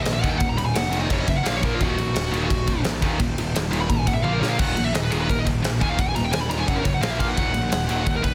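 Heavy metal in Eb minor at a driving 172 BPM in straight 4/4, dark and relentless, cut from a longer piece and built on power chords Eb5, Gb5 and Bb5 resolving to Ebm. A dark, high-gain lead guitar solos over the whole passage above a bright, double-tracked distorted rhythm riff, while a growly, fuzz-laden picked bass sits in the background. An up-front acoustic kit with a punchy kick, medium-tuned snare, ride, crashes and toms rings in a stone room and throws a fill at 4.2 seconds, all under light reverb and a dense, heavily limited modern master.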